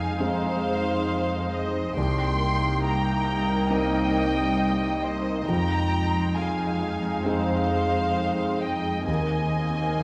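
A cinematic passage cut from a longer piece opens at once with muted violins singing a veiled, vibrato-laden melody over a second, more distant violin line, while con sordino violas and cellos fill in the accompaniment and the bass. A warm concert grand adds an intimate accompaniment with audible action noise and long sustain, and a ringing harp plays arpeggios in the background as the harmony moves from Fm7 to Cm7 and back before settling on Abadd9/Eb. The tempo is slow and rubato at around 64-70 BPM in 4/4, and a wet scoring-stage reverb gives the moving, hopeful mood a soft, dark glow.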